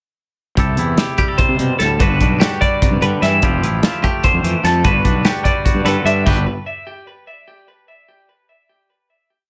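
A bright, clean twelve-string electric guitar picks a compressed arpeggio ostinato between G4 and E5 through digital delay and plate reverb from 1.2 seconds. This short, complete piece of math rock and midwest emo runs at 296 BPM counted in eighths, in a straight 7/8 in G major, with a wistful yet playful mood. Beneath it, a twangy electric guitar plays syncopated fingerstyle accompaniment with its own plate reverb, while a fuzz-laden fingered bass, round and overdriven, drives a syncopated riff. A modern studio drum kit sits up front in a small, pumping room, its punchy kick, medium-tuned snare, hi-hat and crash carrying the 7/8 groove. The band enters at 0.6 seconds and moves through C6, Gmaj7, Fmaj9 and Gmaj7 before settling on a final chord at 6.3 seconds, with light reverb over the mix.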